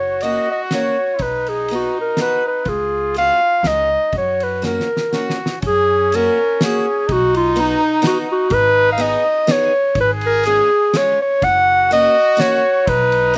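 A mellow clarinet sits up front and carries the melody in a classical style through this festive, bouncy alpine folk dance-band fragment, cut from a longer piece in a lilting triple metre with a slight swing and rubato feel. Behind it, a soft-attacked trumpet with vibrato plays a distant, roomy second line, touched by a slapback echo. An upright bass gives a woody pizzicato foundation, while a bright, boxy parlour steel-string guitar, picked, supplies the accompaniment from 0.2 seconds. A loose drum kit in a small, pumping room joins at the same moment with a tight kick, fat snare and dark ride cymbal, and plays a fill from 4.6 to 5.6 seconds before the opening section comes around again. The harmony moves through major chords with suspended and added-ninth colours and a brief minor turn, and the mix is dry.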